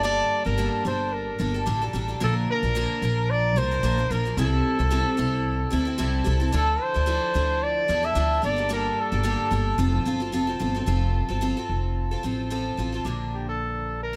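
A trumpet melody opens this heartfelt, easy-going acoustic pop passage at 0.0 seconds, riding over a picked twelve-string acoustic guitar and an upright bass from the very start. The tempo sits at 111 BPM in 4/4 with a gentle 16th-note swing, in F major, moving through chords such as Gmadd9, Bb, C6 and Dmadd9. The trumpet sings in a pop style with a punchy, roomy tone, light vibrato and scooped notes. It drops out at 10.1 seconds and returns at 13.3 seconds over a closing Bb chord. Underneath, the twelve-string's bright, shimmering, octave-doubled voice carries the accompaniment, with the odd finger squeak audible, while the pizzicato bass adds a woody, warm foundation. The sound is dry, with little reverb and the instruments placed up front.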